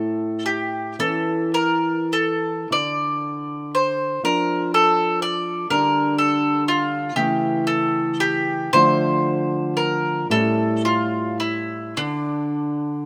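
Light reverb surrounds a close, up-front duo in this elegiac, melancholic romantic piece, a fragment of a longer work in a slow, rubato 6/8 at roughly 33-42 BPM counted in dotted quarters, tuned to A4 = 442 Hz. The bowl-back mandolin carries the melody with a warm, picked tone, its double strings ringing between D4 and D5. Beneath it, the small-sounding nylon-string guitar supplies a dark, thumb-plucked accompaniment with audible finger squeak, moving through A, Dm, G5/D, A/C#, Dm and A7 before the excerpt ends at 13.1 seconds.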